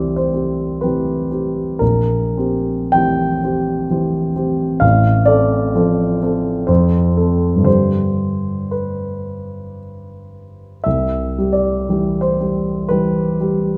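Nostalgic and dreamy, this romantic classical nocturne for solo piano drifts in 3/4 at a slow, rubato pace between 49 and 66 BPM in C major, tuned slightly below standard pitch. A polished, present grand piano sits up front, spanning A1 to G5 as the harmony moves from C through C7/Bb, F/A and F to G before settling back on C at 10.9 seconds. A lush recital hall reverb surrounds the instrument, with a faint mains hum beneath, in this 13.8-second fragment cut from a longer piece.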